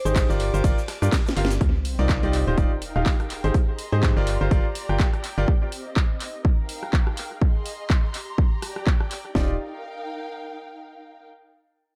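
A swung house groove drives this uplifting, feel-good piano house excerpt, with a punchy kick and cracking snare from tape-toned house kits up front, handclaps, hat, ride, rim click and shaker echoing through analog delay, and a gritty, pitched-up breakbeat layer tucked far beneath. A very quiet, sul tasto violin section holds sustained chords over the opening drop until 1.6 s, when a faint electronic sub drop lands and a lush, woody string section takes over as a distant, pumping backdrop through 11.2 s. A clear concert grand with audible action noise and long sustain plays a delayed riff through seventh and ninth chords, pumping against the kick alongside a hollow, percussive organ-like FM bass, both dropping out at 5.5 s before brief returns near the end, all set in light reverb.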